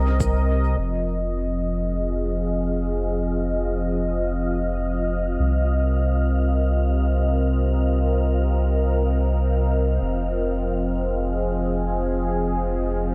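Opening with a detuned sawtooth pad, smooth and bright with chorus, holding sustained chords up front over a round, soft sub bass, this meditative, deep ambient dub excerpt moves between Cm7 and Fm7 with a gently swung feel, while an overdriven electronic cabasa with dub echo sits in the background of a small room, and a breathy, wind-like tuned noise texture with its own reverb enters with a slow attack at 1.7 s, the whole mix held in light reverb.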